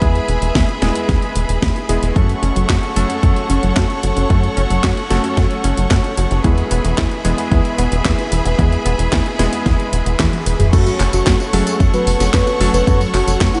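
A tight, nasal sequencer bass sits up front in this bittersweet, danceable italo disco excerpt in F# minor at 112 BPM, its sawtooth and square-wave tone plucked by a fast filter and trailed by tape echo. A punchy, tape-warm electronic kick and a house drum kit with a cracking snare, handclaps, hi-hat, tambourine, toms and crash cymbal drive the straight 4/4 groove, both re-recorded in a large room. Above them, a bright studio string section holds intense, bowed chords with vibrato, while a clangy vintage electric grand piano adds short stabs through its own tape echo. From 2.2 seconds a round, detuned analog pluck ripples arpeggios in the background with chorus and echo, as the harmony moves between E and F# minor. After a drum fill, a soft, dark octave-layered synth lead enters at 10.7 seconds with a sustained melody coloured by chorus, tremolo, vibrato and analog delay, all set in a dreamy mix soaked in a huge ambient reverb with its top end rolled away.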